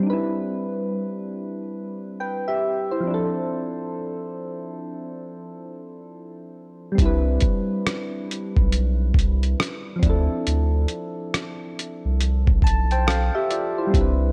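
Soft, round electric-piano-like synth keys open alone, drifting between Cmaj9 and Dm9 in D dorian with a mellow chorus-and-phaser shimmer and a cassette-tape haze, setting a nostalgic, reflective lo-fi hip hop mood at a slow, swung 69 BPM. At 7.0 seconds a deep, saturated sub bass and a dusty, sampler-style drum kit arrive up front, the gritty kit's thumpy kick, hi-hat and rim click sounding compressed and tape-warm. The keys add a fill at 12.2 seconds in this short, dry-sounding cut from a longer piece.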